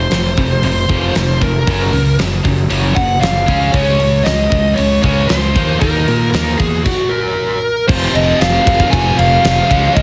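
A straight 4/4 pulse sets up this menacing, aggressive hard rock fragment, with a huge arena drum kit entering at 0.1 s, up front in a big room with a fat snare, punchy kick, crash, hi-hat and ride. Two bright, scooped distorted rhythm guitars, one high-gain and the other tucked in the background, grind out the riff over F5, Gb, Db5 and Ebm, while a growly fuzz-fingered bass anchors the low end. A dark, bluesy overdriven lead guitar with slapback echo sits up front carrying the melody, and the band hits a stop from 6.8 to 7.9 s before returning to F5 under a heavily compressed, radio-style sheen with light reverb.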